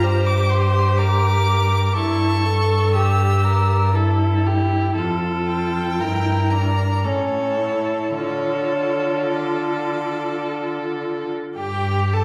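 Classical slow romantic movement for string quartet, solemn and yearning, moving in a rubato three-beat pulse through a 12-second passage cut from a longer piece. A clear, focused first violin sings the melody high above a smooth, even second violin line, while a dark viola adds expressive portamento in the accompaniment and a rich, up-front cello anchors the bass, each player bowing with vibrato. The quartet sits in the wet reverb of a recital hall or church, and the harmony drifts through diminished and dominant colors before settling on D minor around 8.2 seconds.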